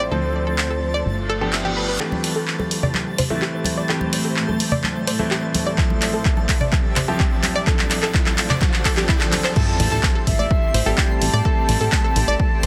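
A dense, heavily limited mix with light reverb carries this bittersweet, driving progressive house excerpt, where a shimmering, ethereal ambient pad holds sustained chords and a twinkling granular texture sits in the background throughout, while a round analog pluck, gritty with vintage 12-bit sampler character and swept by a filter, plays arpeggios beside delayed, low-passed stabs from a clear concert grand piano. A soft octave-layered synth lead with vibrato and a funky, plucky analog bass open the passage and return around the drop at 9.6 s. Meanwhile, the build-up from 2.0 s brings bright, hard-handed congas and a drum fill from a small-room deep house kit of handclaps, hi-hat and crash that has been playing since 0.6 s. An overdriven, punchy electronic kick sits up front from 5.8 s, and a very quiet reverse cymbal, riser and sub drop mark the transitions.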